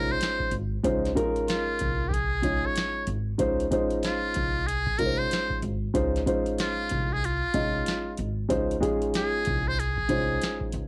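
A swung 16th-note groove at 94 BPM in 4/4 drives this short jazz-hop passage, cut from a longer hip hop piece in Db major and resting on a single Dbmaj9 chord. A booming analog drum machine enters at 0.2 s with a deep kick, crisp snare and metallic hats, its tape-softened sound re-recorded in a small room. Beneath it an upright bass plays pizzicato in a low register, woody and warm with steel strings. A dark concert grand piano sits up front, mellow and short in sustain with a deep low end. The lead is a trumpet with a metal mute, brilliant but thin and buzzy, playing a breathy jazz solo with light vibrato and scooped notes. Cassette tape colour and plate reverb on the trumpet and piano, within a modest booth ambience, give this home cassette recording a smooth, warm mood.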